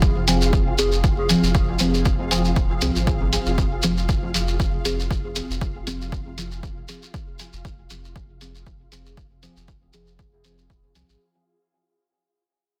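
A swung sixteenth-note feel in steady four drives this deep, hazy dub techno fragment, cut from a longer piece. An overdriven, punchy electronic kick sits up front until 10.8 seconds, while a muffled, pitched-down hi-hat enters at 0.3 seconds and lingers in the background with a tape-warm, roomy character. Beneath them, a clean, smooth sine sub bass with tube saturation breathes with sidechain pumping. A soft, dark, wave-folded chord stab drenched in chorus, phaser and dub echo hovers on a single minor chord, and a filter sweep runs across it for the whole passage. A mellow, grainy shekere and a bright, flickering granular texture with its own reverb fill in the edges, all within a dense, heavily limited mix that fades out throughout.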